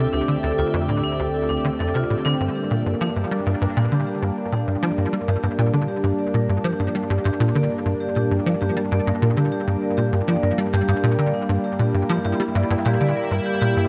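This hypnotic, mysterious stretch of sequencer-driven space music opens at 99 BPM in G dorian over Dm7. A punchy sawtooth sequencer bass riff drives it up front with ensemble chorus and tape echo, joined by a bright, detuned resonant pad sustaining chords through chorus and shimmer reverb, a very quiet analog drone underneath, and a twinkling granular texture that sparkles until 2.4 s. At that point the harmony settles on Gm and the metallic, ringing vibraphone arpeggios, present from the start, fade in through tape echo and shimmer reverb, while a moderate plate reverb gives this piece, cut from a longer work, a deep, floating space.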